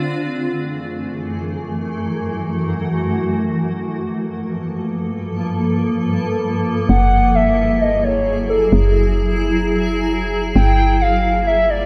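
A light reverb and digital ambience surround this melancholic, eerie IDM fragment, cut from a longer piece. A cloudy, blurred granular pad holds sustained chords throughout, evolving under its own built-in reverb while a filter sweep passes over it in the opening stretch. At 6.9 seconds the music shifts as a warbling, nostalgic lead enters with a mellow melody, coloured by lush chorus, vibrato, vintage 12-bit sampler grit and tape echo. A woody, round FM bass arrives at the same moment, its soft, decaying notes sitting up front with a touch of tube saturation. The harmony drifts between minor ninth and suspended chords, and the lead and bass play until the cut at 11.9 seconds.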